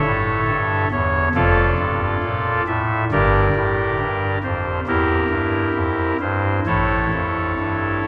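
A soft reed stop on the pipe organ carries this brief classical chorale-style fragment alone, its oboe-like solo voice set up front with a baroque voicing and a chiff at the onset of each note. The mood is dark and grave, moving at a slow 64-70 BPM in 4/4 with a rubato feel that lets the phrases breathe. The organ spans from a deep F1 up to E5, tuned slightly below standard pitch at A4 = 437 Hz. The harmony moves from A7 through Dm/F and Edim/G before settling on A at 6.7 seconds. A cavernous cathedral reverb with a 5.6-second decay surrounds the organ, and the 8.1-second passage is cut from a longer piece.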